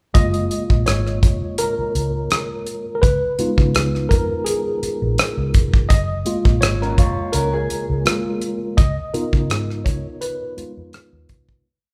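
Lightly reverberant, the recording sounds like a band playing live together in one room. It is a short, lush piece of 1970s-style soul in F# major at 84 BPM, in 4/4 with a gentle sixteenth-note swing, alternating between rootless F#maj9 and C#13 chords throughout its single verse. A worn, slightly out-of-tune tine electric piano with a touch of overdrive sits up front through its built-in speakers, taking the solo with drop-2 voicings that halve the chord rhythm. Underneath, a dark, round, foam-muted fingered bass plays a punchy, melodic soul line full of muted ghost notes and chromatic approach notes, while a dry, damped 70s drum kit with a tight kick, rolled-off top and rim clicks keeps a smooth mid-tempo groove, the loudest part of the mix. From 6.8 to 8.6 seconds a slightly broken-up, lo-fi electric guitar through a small old amp adds brief picked fills in sixths between phrases, before the whole piece fades out from 8.8 seconds.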